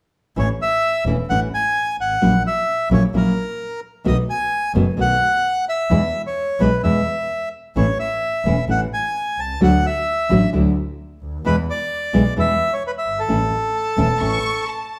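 A reedy bandoneon carries the melody from the first moments of this nostalgic, elegant tango in A major, set at 130 BPM in 4/4 with a flexible, rubato feel. Beneath it, a fingerpicked nylon-string guitar gives full-bodied accompaniment on fresh strings, while a bowed double bass, played by one player, adds an earthy, biting low end with light vibrato. The harmony moves from A through F#7/A# and B7 to E, then returns to A and passes through Dadd9 and E before settling on A again. Near the close, at 13.8 seconds, a smooth, even violin section enters up front with a brief second line, sounding on its own after the guitar and bass stop at 14.4 seconds and the bandoneon at 14.6 seconds. A large studio reverb places the ensemble further back in the room, giving this short cut from a longer piece a spacious, wet sound.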